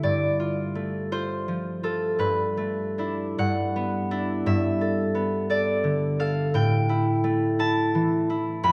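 A concert harp plays alone in this dreamy, serene classical excerpt, its ringing, fingerpicked tone sitting up front across a span from F2 to B5. The piece moves in a rubato 6/8 at about 57 BPM, drifting through added-tone harmonies from Fadd9/G to G69, Em9/G and Gadd9 before settling on an open A5 at 6.5 seconds. A wet scoring-stage reverb surrounds the harp and lets each note bloom into the room.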